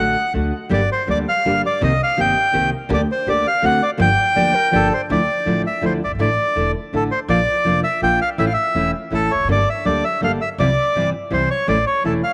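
A tense, dramatic tango in 3/4 at 164 BPM, played with a rubato feel, this short excerpt begins in G minor and moves to D minor from 5.1 s. The reedy, close-miked bandoneon carries the melody up front, full and dry, with a touch of tape echo. Beneath it, a fingerpicked nylon-string guitar gives full-bodied classical accompaniment, while a pizzicato upright bass adds a woody, growly low end. A clarinet in classical style slips in briefly in the background as a second line, from 4.4 s to 5.1 s. The small room ambience and light reverb keep the sound intimate, and the harmony passes through chords such as Cm7, D7, Dmadd9 and Asus4 before settling on A.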